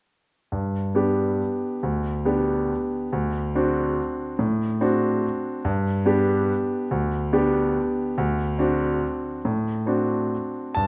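A clear, natural-sounding grand piano sits up front in a moderate recital hall reverb, playing an elegant, playful classical waltz in 3/4 with uneven beats and rubato, alternating between G and D7 chords across a range from D2 to A5 in this short passage cut from a longer piece, sounding from 0.5 to 10.9 seconds.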